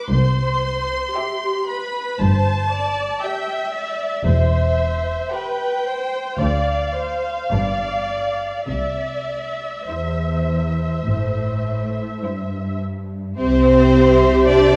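A dark, woody violin section carries the melody in this tender, serene slow movement for string orchestra, its soft-attacked, vibrato-laden line sitting close in the sound. Cut from a longer piece in C major, it moves with rubato at roughly 50-59 BPM in 4/4. The violas, cellos and double basses begin at once beneath the melody: the violas give a rich, smooth accompaniment up front, the cellos an even bowed foundation, and the double basses a distant bass with light vibrato. At 1.2 seconds a second violin section joins with a warm, expressive line marked by portamento. The harmony passes from C through C/E, Dm7 and G7 before settling back on C at 8.7 seconds, and a brief new section opens at 13.4 seconds. A wet recital-hall reverb surrounds the lush ensemble in a romantic glow.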